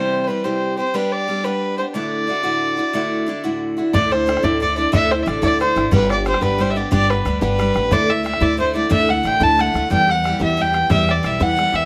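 Bright and lively, this short Celtic folk slide in 12/8 is cut from a longer piece. A single bowed fiddle carries the melody up front, its gut-string tone dark and reedy with a smooth top, bathed in plate reverb. Beside it, a picked steel-string acoustic guitar accompanies from the start with a concert sound, and finger squeaks can be heard on its strings. At 3.9 s an upright bass joins with woody, growly, thumpy pizzicato on steel strings, together with an open, boomy bodhran that sounds close and dry in the background. The harmony moves from C through G and Dadd9, then turns to Dsus2, G and Em, heard in a moderate studio room.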